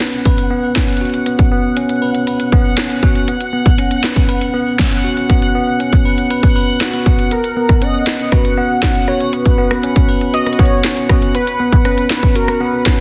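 Wistful and glitchy, this IDM piece in B major moves at 119 BPM in a straight 4/4, with the whole passage centred on a B5 chord and cut from a longer piece. A bell-like tine electric piano carries bright, clean arpeggios up front from the start, its tape echo trailing behind, while an industrial drum kit supplies crisp hats, rim clicks and a clanging snare in a small room with tape echo of its own. A bubbling stepped-filter texture sits quietly high above, its resonant sawtooth tone shifting through random filter steps and bathed in chorus and built-in reverb. A heavy electronic kick joins at 0.3 seconds and stays up front, the loudest part of the mix. At 7.3 seconds a velvety, full-bodied synth lead enters with the melody, its detuned unison tone coloured by chorus, vibrato and tape echo. A moderate digital room reverb ties the parts together in a dense, heavily limited modern master.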